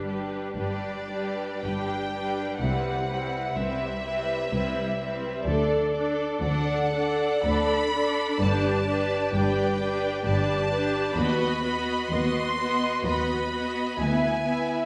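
A reverberant recital-hall sound surrounds this lyrical, tender slow romantic movement for string orchestra in G major, flowing in a rubato 3/4 at 54-66 BPM, where a violin section carries a smooth, even melody from 0.6 s above a lush, expressive second violin line, an up-front viola accompaniment, and a bass of background cellos and lightly vibrato-touched double basses, with the harmony moving from G through Cmaj7 and D to B/D# and E7/D before the excerpt breaks off at 14.9 s.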